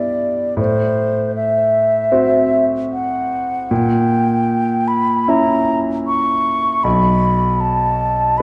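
Melancholic and yearning, this romantic classical duo moves at a rubato 77 BPM in 4/4, with a mellow, hollow silver concert flute singing the melody up front, its airy tone shaded by vibrato and tongued notes. A clear concert grand piano accompanies, its deep bass anchoring harmonies that drift from Em/G through F#m7b5/A to a tense A#dim7 before the harmony turns ambiguous at 6.8 seconds. A wet concert-hall reverb and a dark, warm production wrap this short passage cut from a longer piece.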